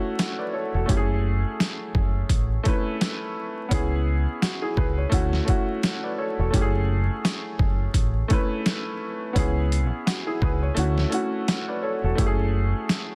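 Reflective and moody, this boom-bap hip-hop cut moves with a lazy swing on the sixteenths. A clear upright piano carries the accompaniment, its woody, slightly detuned tone given a worn cassette-tape character and filtered at both ends of its range. A sampler-style drum kit sits up front with a thumpy kick, a medium-tuned snare and hi-hat, all pitched down, compressed and gritty with overdrive. A deep dub fingered electric bass, dark and round, enters at 0.7 seconds to anchor the low end. The harmony circles through Dmaj7, F#m7 and C#m7 under a digital ambience, a dense, heavily limited master and a layer of vinyl crackle. The kick drops out from 10.8 to 12.2 seconds before the piece is cut off.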